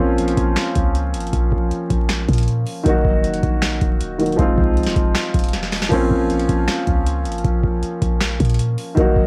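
Trap hip hop at 157 BPM in a half-time feel, menacing and melancholic in Bb minor, this short cut from a longer piece pairs an up-front baby grand piano, softened by cassette tape and warm with a long sustain, with a deep, clean sine-like 808-style bass that sits in the background. A booming analog drum machine enters at 0.2 seconds with a deep kick, crisp snare, metallic hi-hats, finger snaps and crash cymbal, also run through cassette tape, and plays a drum fill at 5.5 seconds. The harmony moves from Bbmadd9 through Ebm and Fm7 back to Bbmadd9, and the dry home-cassette sound carries a layer of vinyl crackle.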